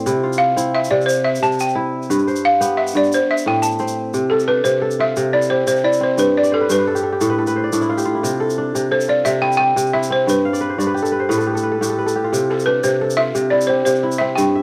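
West African traditional string and xylophone music in a joyful mood, moving at 117 BPM in a straight 12/8 lilt in C major, in this excerpt cut from a longer piece. A woody, buzzing balafon struck with hard rubber mallets carries the melody up front with a dry, band-limited vintage tone, taking a solo through the first 4.1 seconds. Alongside it, a crisp, ringing fingerpicked kora with a cassette-tape colour plays arpeggios up front and adds fills from 6.4 and 10.4 seconds, while a grainy egg shaker sits low in a small-room home recording with light reverb.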